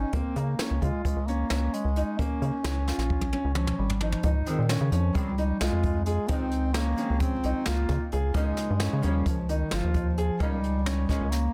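A rubbery, nasal square-wave bass sits up front and anchors this driving progressive instrumental, a short cut from a longer piece in 9/8 at 263 BPM counted in eighths, set in Db lydian. A mellow bass clarinet plays the melody in a classical style with digital delay, while a concert grand piano with audible action noise and long sustain supplies arpeggios, also through digital delay. A jazz drum kit played with brushes keeps the intricate meter in an airy studio room, with a medium-tuned snare, boomy kick, hi-hat and toms, and a drum fill from 2.9 to 4.2 seconds leads into the second section. At 4.2 seconds the harmony moves from Db6 to Dbmaj7, and at 4.5 seconds a clean, dark, double-tracked hollow-body archtop guitar enters with picked accompaniment before the chords settle on Bbm at 8.4 seconds. The sound has light reverb and a dense, heavily limited modern master.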